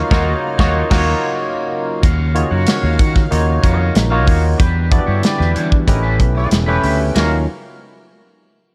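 A straight 4/4 groove at 94 BPM drives this slick, urban slice of polished 1980s jazz-funk pop, cut from a longer piece. The modern studio drum kit sits up front with a punchy kick, a medium-tuned snare, hi-hat, ride and crash, its top end rolled off, while a growly, amped fretless bass sustains low beneath it. A bright, barky tine electric piano with analog chorus carries the accompaniment, and an electric guitar at the edge of break-up plays a twangy, picked riff through lush chorus. A tight horn section adds a second line from a roomy distance, and a thick, detuned sawtooth unison pad holds very quiet sustained chords with phaser. The band hits an accent over the opening two seconds on Ebm9, then the harmony moves through Em7 and A9 before returning to Ebm9 at 7.2 seconds, all set in light reverb and a dark production.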